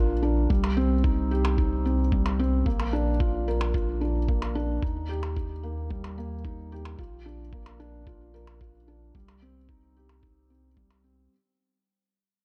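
Piano and strings electronica at 111 BPM in 4/4, tender and luminous, where a felt-muted upright piano plays a soft, intimate riff with audible action noise and delay over a deep, round sine sub bass with sidechain pumping, joined at 0.5 seconds by a muffled, thumpy electronic kick and a moment later by overdriven percussion blips, all set in a dark production with light digital ambience that fades out across this short excerpt moving through Cm, Bb and Eb.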